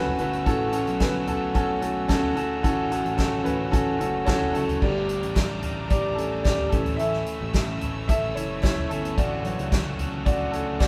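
A brilliant, up-front grand piano leads this hopeful piano-driven pop excerpt in a straight 4/4, carrying the accompaniment and then taking a solo from 4.8 seconds as the music moves into a new section. Beneath it, an overdriven electric guitar plays a picked riff, while a direct, picked electric bass holds the low end. The acoustic drum kit is played with soft mallets on drums and cymbals, giving a punchy kick and a medium-tuned snare a roomy, distant character, and a very quiet group handclap adds a crisp layer from 0.7 seconds. Far back in the mix, a lush bowed string section sustains smooth, even chords with vibrato. The band sounds as if it's playing live together in one stone room with a wet reverb, as the harmony moves from A6 through Gmadd9 and A to a closing Dmaj7/A.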